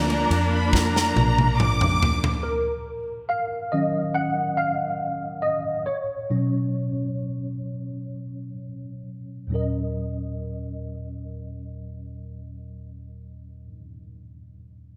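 A worn, slightly out-of-tune tine electric piano with an ensemble chorus sits up front through the whole of this heartbroken pop ballad in Eb minor, moving at 62-71 BPM in a straight 4/4. It opens alongside a full band. A focused, smooth-topped symphonic violin section carries a second line above lush, distant studio strings holding sustained chords with vibrato and portamento, a dark, round, foam-muted fingered bass, and a tight acoustic drum kit with gated reverb that plays a fill into the first change. The bass falls away at 2.0 s, and at 2.4 s the strings and drums follow, leaving the electric piano to take a solo over Ebm7 and Bsus2 as the tempo slows, continuing on its own past 9.5 s as the harmony returns to Ebm7. A lush hall reverb and bright 1980s-style digital production give the emotional cut a polished, expansive sheen.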